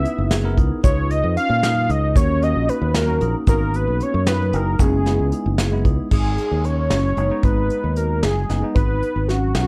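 In a driving, straight 5/8, this brooding progressive band fragment, cut from a longer piece, sets a thick, detuned sawtooth unison lead up front over a growly fingered electric bass and a dark-cymbaled brush kit, while a bell-like tine electric piano, a ringing vibraphone with analog delay and a grainy tube shaker sit in the background of the dark production, moving from F#9sus4 toward G#m at 6.1 s.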